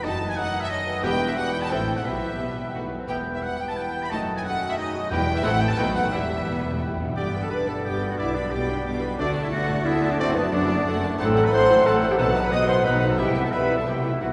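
A bright, close violin section carries the urgent, restless melody in this classical orchestral excerpt at 178 BPM in 3/4, moving from E minor to G major at 7.2 s. Clear second violins, oboe, clarinet and a hollow flute add second lines, while bassoon and a smooth viola section accompany, mellow French horns and distant trombones sustain chords, a ringing harp plays arpeggios, and a trumpet adds stabs over an expressive cello and rich double bass foundation. Timpani on calf heads enter at 1.0 s, return at 5.1 s with a fill at 6.1 s, and come back at 12.2 s, and the whole orchestra sits in a wet cathedral reverb.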